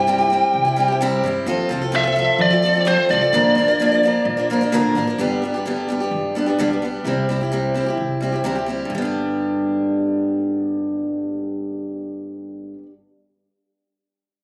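This folk rock and heartland rock excerpt opens with a biting, overdriven electric lead guitar carrying the melody over a boxy, picked parlour-style steel-string acoustic guitar and a woody, thumpy pizzicato upright bass. At a straight 129 BPM in 4/4 and G mixolydian, the mood is jangly and warm as the chords move from C to F to Bb before settling on G. The picked lead line has slapback echo on it and sits up front, then drops out at 4.7 seconds, leaving the bright acoustic guitar and dark upright bass to carry the harmony through C and back to G. The acoustic guitar is also prominent in the mix, while the bass sits lower underneath. The sound has the feel of a phone recording made in a small club room, with light reverb around the players. The bass stops at 12.7 seconds and the acoustic guitar rings on until 12.9 seconds.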